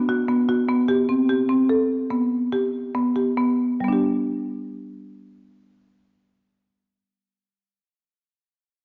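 In a straight 7/4 that slows from 0.5 to 3.8 seconds, this shimmering, hopeful contemporary instrumental fragment features a solo marimba played up front with medium mallets on padauk bars, its woody, dark, smooth arpeggios moving through B5, Am9 and G in a moderate recital hall reverb, all heard through worn, warbly old cassette tape with drifting pitch and a dulled top end.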